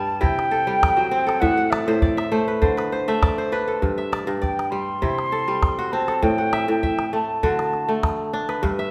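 Bright, ringing kora arpeggios sit up front in this short, hypnotic cut from a longer piece of West African traditional string and xylophone music, moving at 100 BPM in a straight 4/4 in C lydian, with a crisp kora fill between 1.4 and 3.8 seconds. A distant, airy silver concert flute carries the melody with vibrato and tongued notes, while a deep, close and dry calabash keeps the percussion. The recital hall reverb gives the whole a warm, wet sense of space.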